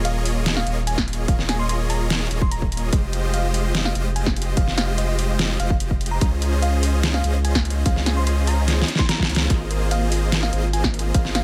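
A half-time groove at 146 BPM in 4/4 drives this playful, lush future bass excerpt, cut from a longer piece, with a dubstep drum kit of hi-hat and a deep, layered snare recorded in a large room, joined at 1.0 s by a hard-clipped, overdriven electronic kick sitting up front. A thick, saturated sine sub bass holds the low end between Eb1 and Db2, pumping with the sidechain alongside huge, detuned sawtooth supersaw chords that carry the riff through Eb9sus4, Fm9, Dbmaj9 and Ab69. In the background, a sparkling, bell-like FM electric piano sings the melody from Eb5 to C6, treated with chorus, delay and sidechain pumping. After a drum fill at 8.7 s, a round, tine-like thumb-piano-style pluck slips in at 9.5 s with gentle, nasal arpeggios colored by chorus and tape echo. A digital ambience surrounds the mix, giving the bright chords and up-front drums a polished, spacious sheen.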